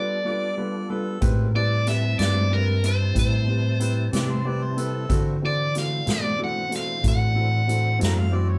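Slow blues with a swaggering, rollicking 12/8 groove, cut from a longer performance by a band playing live in one room with light reverb. A biting, overdriven guitar carries the melody up front over woody upright piano and a clean, key-clicking tonewheel organ in the background with chorus vibrato and a slow rotary speaker, while a mellow, distant harmonica adds a second line with scooped notes from 0.3 seconds. At 1.2 seconds a dark, round fingered electric bass and a swinging big-band drum kit with a punchy kick and natural big-room sound join in as the chords move from G9 to Am7 and then D9.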